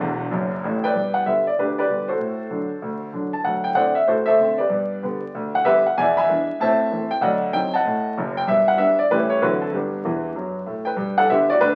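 Exuberant and swinging, this short cut from a longer stride piano jazz piece features a solo concert grand piano, clear and up front with deep bass, smooth tone and short sustain, playing fills at the start and again from 10.0 to 11.0 seconds, all heard through a wet studio reverb and the crackle of a very old 78 rpm record.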